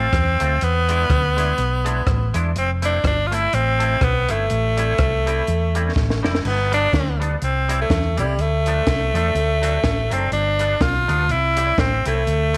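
Mischievous and driving, this ska excerpt moves at 124 BPM in A minor with a lightly swung eighth-note feel. A raspy tenor saxophone carries the melody up front, its gritty, forceful tone colored by vibrato as it plays over chords that move from Dm7 and E7 through Fmaj7 and Am7. Beneath it, a hollow-body short-scale electric bass sits close and round, playing fingered lines in a dark, amped voice, while a semi-hollow electric guitar stays in the background with a bright, clean, picked sound given analog chorus. A compact cocktail drum kit joins at 0.1 seconds with a high-tuned snare, punchy kick, hi-hat, rim click and crash, its top end rolled off to a smooth, warm character in a small room. A drum fill at 6.0 seconds leads into a second section that cycles through G, C, Dm and D7, and light reverb gives the whole band a touch of space.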